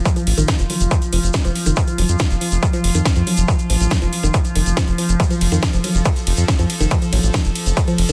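A distorted, overdriven electronic kick sits up front in this driving, hypnotic psychedelic trance excerpt at 140 BPM in F major, alongside a deep, round analog bass entering at 0.3 seconds, a woody, warbling wave-folded pluck riff with 12-bit grit and digital delay, a resonant drone of sustained chords with moving overtones, a techno kit of cracking snare, metallic hi-hats and ride, and a grainy tube shaker, all under a dense, heavily limited master with light reverb and sidechain pumping on the pluck and drone.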